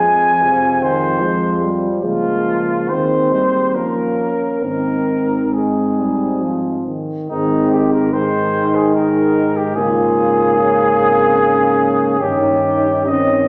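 In a rubato 3/4 at roughly 66-76 BPM, this classical, hymn-like brass band excerpt moves with a tender, warm mood in Ab major. A dark cornet carries the melody up front, singing with light vibrato yet sounding distant and roomy, while a French horn section sits in the background on a second line, also touched with light vibrato. Beneath them, a euphonium with a vintage tone and a trombone with gentle vibrato fill in the accompaniment, and a mellow tuba anchors the bass. All five parts play throughout, from 0.0 to 13.5 seconds, and the phrase is stated twice, with the repeat beginning at 7.3 seconds. The harmony passes through Fm7, Bbm7/Db and Ab/Eb before settling on Ab, then leans toward Eb7/G at the end, all bathed in a wet recital-hall reverb.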